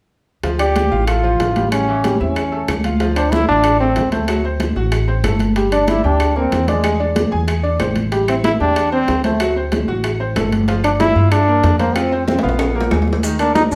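This salsa cut, taken from a longer piece, sounds like a band playing live together in one large studio, with a wet reverb that gives the room plenty of bloom. Up front, a bright, punchy trombone carries the solo melody in a pop style, its smooth top shaded by a light vibrato. Beside it, a thumpy upright bass plucks dark, woody lines on gut strings, while a brilliant, worn grand piano supplies open, short-sustained accompaniment through minor-key changes. The percussion spreads across the room: distant, high-tuned congas with a thin skin, soft-handed bongos sitting tight in the background, close and dry metal-shell timbales that ring, and faraway claves. A drum fill arrives at 12.3 s, and grainy, mellow maracas join only at 13.2 s, closing out a danceable, fiery passage.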